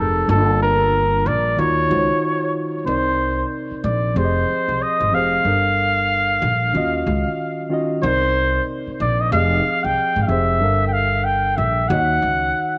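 A 4/4 pulse at 93 BPM with a 60% swing on the sixteenths carries this soulful, smooth neo-soul R&B excerpt in C minor, where a punchy, vintage flugelhorn with vibrato sings the up-front solo melody over a reedy, clean electric piano heard through its built-in speakers and a woody, growly pizzicato upright bass, all placed in a moderate echo chamber reverb as the chords cycle through Gm9, Ebm9, Cm9 and Fm9.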